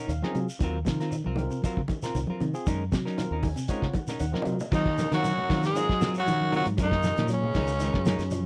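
Afrobeat with an intense, hypnotic pull, cut from a longer piece, where a barky, bell-like tine electric piano, picked clean guitar stabs with subtle chorus, a dark, slightly broken-up guitar arpeggiating in the background, a fingered electric bass, a muffled, cloth-damped drum kit with a fat snare, congas and a distant shekere lock into a groove; at 4.7 seconds the electric piano drops out as a raspy, growling tenor saxophone takes the melody up front, shadowed by a second tenor line and a brilliant, very quiet bass trombone in a dry, close 1970s-style studio sound.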